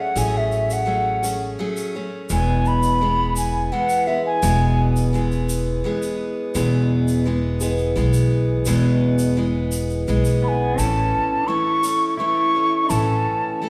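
Acoustic folk in an unhurried 3/4 at 85 BPM, peaceful and nostalgic, where an airy, hollow wooden flute carries the tongued, vibrato-laden melody up front over picked steel-string acoustic guitar, woody pizzicato upright bass and a grainy, bright tube shaker. The flute drops out after 5.3 seconds and returns at 10.4 seconds, when a clean, twangy pedal steel guitar enters with a fingerpicked slide second line. The whole ensemble sits in the lush reverb of a recital hall, roughly 1.5 seconds long, that suggests a church or concert hall.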